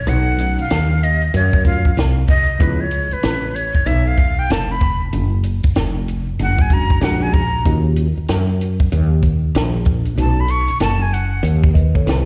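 A breathy, close-miked jazz flute with expressive vibrato carries the melody through this smoky, nocturnal jazz-hop fragment at 95 BPM with a swung 16th feel, its plate reverb and slapback echo shared by a worn, slightly out-of-tune tine electric piano that accompanies until 2.9 seconds and returns at 6.7 seconds, while a growly, round fretless bass with analog chorus and a dry, punchy cocktail drum kit with a high-tuned snare sit up front, the whole heard as a live gig through a venue PA with recital hall reverb and vinyl crackle.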